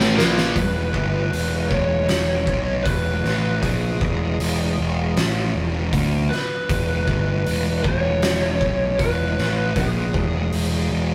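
This restless, anthemic quiet-loud alternative rock fragment in E major opens on a drum fill from an oversized, low-tuned kit with a fat snare and a punchy kick, saturated in a bright stone room, while three distorted guitars (a high-gain part, a dark fuzz part and a double-tracked overdriven one) play a brief riff that ends at 0.6 seconds. A lead guitar through a small cranked amp enters at 0.2 seconds with a lo-fi, overdriven melody carrying digital delay, and an up-front, bright fuzz bass growls underneath. From 0.6 seconds the drums settle into a half-time feel at 78 BPM, and the rough rehearsal-room sound carries light reverb.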